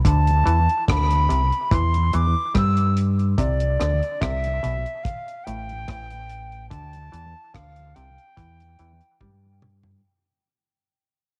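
A hazy, laid-back dub reggae groove in straight 4/4, heard as a fragment cut from a longer piece and fading out across its whole length. A deep, dry reggae drum kit with a tight kick sets the pulse with hi-hat, rim click and toms, closing on a drum fill from 9.2 seconds. Up front, a dark, round and punchy fingered electric bass carries a low line with a touch of transformer saturation. A muted clav plays a hollow, nasal, overdriven riff through a combo amp, colored by cassette tape and dub echo, while a reedy concert flute sings the airy, straight-toned, tongued melody up front under the same tape and echo treatment. The harmony moves through D5, Em, C and Fadd9/A, and the whole take sits in a small room ambience with the worn character of a home cassette recording.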